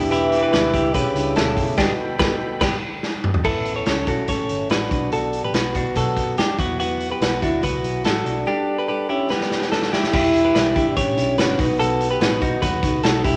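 A lightly reverberant mix carries this restless, wistful jangly indie pop at 144 BPM in E dorian, where twangy, compressed clean electric guitar arpeggios ring up front through spring reverb beside a gritty, saturated garage drum kit with a punchy kick and fills at 3.0 and 9.3 seconds, while a round, foam-muted picked bass sits low, a picked steel-string acoustic guitar with finger squeak plays accompaniment in the background, a mellow, distant French horn carries the melody, and a warbling, detuned analog pad glows very quietly until 3.4 seconds.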